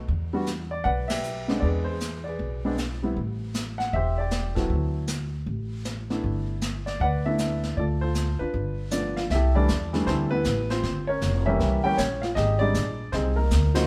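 Jazz piano trio in a playful, swinging mood, with a polished, present upright piano carrying the melody over a woody, thumpy pizzicato upright bass and a dark, rolled-off vintage drum kit played with brushes, all set in a moderate stone room where the band plays live together, hitting shared accents at 1.0 and 13.7 seconds as this cut from a longer piece moves through rich seventh, ninth and thirteenth chords.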